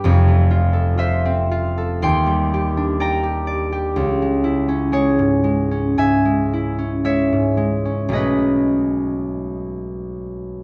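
Serene and graceful, this short fragment of a classical solo harp piece unfolds at a slow 52-65 BPM in 4/4, with a rubato feel that lets the pulse breathe. A lone concert harp carries the whole passage, fingerpicked and sitting up front, its warm, ringing tone spanning from a deep F1 to a bright C6. The harmony drifts from Fmaj7 through D#maj7 and C#m before settling on a lush B13 at 8.1 seconds, giving the brief 10.6-second passage a dreamy, searching color. A wet recital hall reverb, with a decay of 1.6 seconds, surrounds the strings and lets each note bloom into the space.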